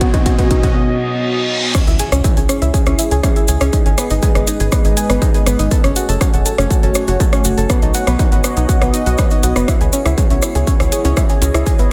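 Dramatic and driving, this melodic techno passage in C# minor moves at 121 BPM in a straight 4/4, cut from a longer piece. It opens on a short build-up, where a drum fill and riser give way to a brief break with a reverse cymbal, before the drop lands at 1.7 seconds with an electronic impact. A distorted, layered kick sits up front, joined by a techno kit of metallic, high-passed hats, rim clicks and crash cymbals, while a grainy, bright acoustic tube shaker enters with the drop. Shortly after, at 1.9 seconds, a tight, punchy sequencer bass blends sawtooth and square tones with a filter pluck and moving notch, pumping under the kick. Above it, a soft, round pluck spins chorused, delayed arpeggios over a moody, detuned analog pad holding sustained chords, with a deep ambient pad adding reverb-soaked texture in the background. The harmony cycles through C#m, G#m, F#m and B, and the mix carries a light reverb throughout.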